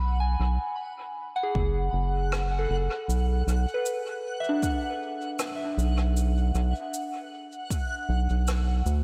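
Meditative and hazy, this swung ambient dub fragment rests on a round, dark analog bass and gentle FM bell arpeggios trailed by chorus and tape echo, while a reversed, granular texture glows softly behind them, a deep layered electronic kick enters at 1.6 s, and a natural small-room rim click and cabasa with dub echo joins at 2.3 s, all under a light reverb.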